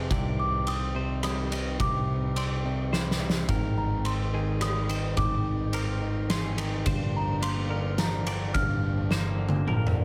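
A cathartic, cinematic post-rock excerpt in 3/4 at 107 BPM opens on a reedy, breathing harmonium holding background chords, a twangy electric guitar and a bright twelve-string electric guitar picking slapback-echoed arpeggios, and a round, dark picked bass, before an oversized low-tuned drum kit with a punchy kick, dark cymbals and a gritty, pumping big-room sound enters up front at 0.1 s, throwing drum fills at 2.9 s and 9.1 s, while a delicate, bell-like celesta carries an airy melody with slapback echo from 0.4 s over chords moving from Cm to Abmaj7 to Gm7 in light reverb.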